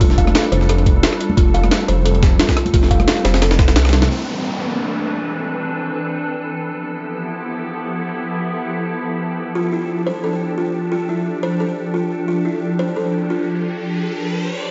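Dreamy and lush, this liquid drum and bass passage at 176 BPM in F lydian is cut from a longer piece and opens straight into a drop, with a glassy, ethereal FM pad holding sustained chords up front through the whole 14.7 seconds, its ensemble chorus, built-in reverb and sidechain pumping giving it a breathing, mellow sheen. Beneath it, a deep, rumbling detuned saw bass sits up front with saturated, beating weight, while a gritty, thumpy electronic kick, a compressed breakbeat kit with a high-tuned snare, rim click and filtered hats, a second pitched-up, tape-softened kit in the background, and distant small-room congas drive the groove with a light swing on the sixteenths. A woody, buzzing kalimba with a thumbnail pluck traces short, dark arpeggios through tape echo, first during the drop and again from 9.6 seconds. A drum fill and band accent close the drop at around 4 seconds, after which the rhythm section falls away and a downlifter ushers in a floating stretch where the pad carries the harmony from Cmaj13 to G13 and back to F69 under a filter sweep, before an electronic riser builds from 13.0 seconds. 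The production is dark and warm, rounded off at the top and set in a lush hall reverb.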